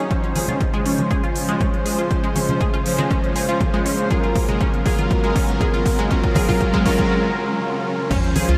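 A straight 4/4 pulse at 120 BPM drives this hopeful, euphoric progressive house build-up, cut from a longer piece: a punchy, overdriven electronic kick and a big-room dance drum kit with crisp hi-hat and crash cymbal lead a drum fill over very quiet congas, while a vintage, chorused analog pad, a bright, phased unison pluck arpeggio and smooth supersaw stabs pump with sidechain over Dbmaj7 and Gbmaj7 chords as filters sweep the pad and supersaw; a quiet riser and sub drop enter at 2.2 s, the drums break at 7.1 s, and at 8.1 s an impact lands with a deep, round analog bass and a faint hi-hat, in a dreamy mix soaked in cathedral reverb.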